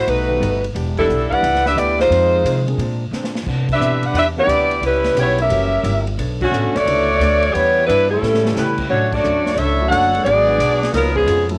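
Big band swing at 177 BPM, swinging and dramatic, in which a clear, close-miked saxophone section carries the melody with vibrato over woody pizzicato upright bass, a punchy, airy drum kit that adds fills, a mellow grand piano in the background and a very quiet, clean hollow-body electric guitar, with the whole band hitting accents together, until a trombone section with light vibrato joins on a second line at 8.1 s, the whole heard as a home cassette recording in a cut from a longer piece, with plate reverb on the horns and piano.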